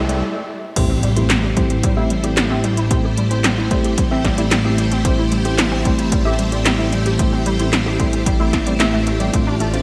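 Bright 1980s-style digital production with a lush hall reverb frames this moody, nocturnal synthwave excerpt in A minor at 112 BPM, tuned to A4 = 436 Hz, where a background riser breaks briefly before an impact lands at 0.8 seconds and the harmony moves from C to Am7. Full-bodied string machine chords pump under sidechain alongside a glossy, detuned chorused synth bass, while a warbly, lo-fi dusty pluck spins chorused, delayed arpeggios in the background. A round, dark FM electric piano adds stabs with 12-bit sampler grit, up-front 80s pad drums bring a gated snare, metallic hi-hats, handclaps and crash, and a punchy, tape-warm electronic kick joins at 0.8 seconds.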